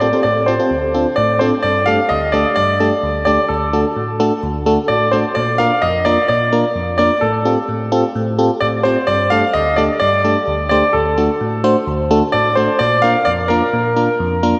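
This pop excerpt has a nocturnal, cool mood and a straight, steady 4/4 pulse. A concert grand piano carries the melody from the start to 14.6 seconds, sitting up front with an intimate, polished tone, audible action noise, deep bass and long sustain, touched by subtle chorus and tape echo. Alongside it, an FM electric piano supplies the accompaniment over the same span, also up front, its glassy, bell-like attack decaying into a warbling, vintage shimmer with a noise layer and its own chorus. The harmony opens on Fadd9/A and Dm7, then settles at 1.6 seconds into a repeating cycle of Gsus2, D, Bb and Fadd9/A. The whole mix is soaked in a lush hall reverb with a long tail, giving it a dreamy quality.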